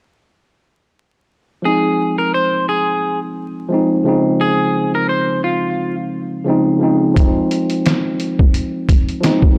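A swung 4/4 boom-bap hip hop groove sets a tough, reflective mood in this dry, gritty clip dusted with vinyl crackle, where a worn, slightly out-of-tune tine electric piano, lightly overdriven as if through built-in speakers, carries the Fm7 and Dbmaj9 chords, a bright, clean picked electric guitar plays the melody with analog delay until 5.9 seconds, and a muffled, compressed, pitched-down sampler-style kit with a thumpy kick and medium-tuned snare arrives up front at 7.2 seconds.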